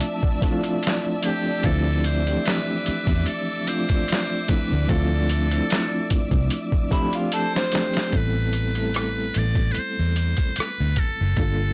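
Sultry and smooth, this neo-soul R&B excerpt sets a reedy electric piano with fast tremolo and a bowed, vibrato-rich string section over gritty, pitched-down boom bap drums, while a buzzy, metal-muted trumpet carries the melody from 1.3 s over a round, saturated fingered bass, a dark lo-fi guitar adds a brief second line from 6.9 s alongside a drum fill, and the blown-out, overdriven recording sits in light reverb as the strings stop at 8.1 s and the harmony shifts from Dm9 to Am9.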